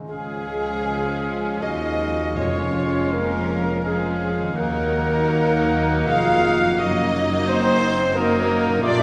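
A sul tasto chamber violin section carries the tender melody of this slow, rubato romantic orchestral movement in 3/4, while a second violin line joins the clear, close-miked oboe, a background clarinet and an airy, hollow flute in gentle counter-lines. A warm bassoon and soft-edged violas fill the middle, a very quiet French horn section holds mellow chords, a trumpet adds restrained stabs, and a ringing, thumb-plucked harp spreads arpeggios. Dark cellos and double basses anchor the bass, timpani sound only between 2.4 and 3.4 seconds, and everything is heard from further back in a reverberant concert hall.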